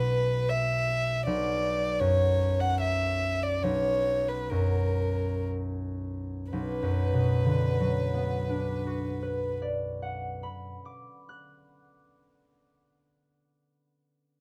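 Lightly reverberant and intimate, this melancholic, yearning romantic classical duo in 3/4, cut from a longer piece, sets a dark, woody solo violin, bowed with vibrato up close, singing the melody over the ringing, fingerpicked accompaniment of a concert harp, with a rubato feel that slows through the opening before the violin stops at 9.6 seconds and the harp rings on alone until 13.8 seconds.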